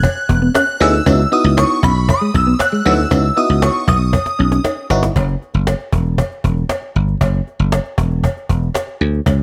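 A growly, punchy thumbed slap bass sits up front in this danceable, late-night early-eighties boogie funk excerpt, driven by snappy soft-handed cajon and a metallic cowbell. Over F#13sus4 and C#m11 chords, a shimmering, detuned bell melody with ensemble chorus and tape echo, a dark, clean fingered guitar riff with analog chorus, and a glassy FM electric piano with phaser all play. A drum fill then leads into the Esus2 section. By 5.1 seconds the bell, guitar and piano have dropped out, leaving bass, cajon and cowbell in small room ambience until 9.4 seconds.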